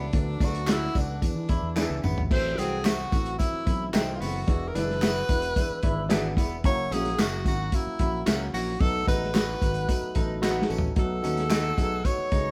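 Uptempo 1960s-style soul, joyful and danceable, led by a warm tenor saxophone melody with vibrato and scooped notes over a woody upright piano, a round, punchy fingered bass, a muffled, up-front drum kit with dark cymbals, a slightly broken-up picked guitar riff through a small old amp, clean guitar stabs in the background and distant handclaps, shaker and tambourine, with piano and drum fills near 2 and 11 seconds, all played live in one room with light reverb in this cut from a longer piece.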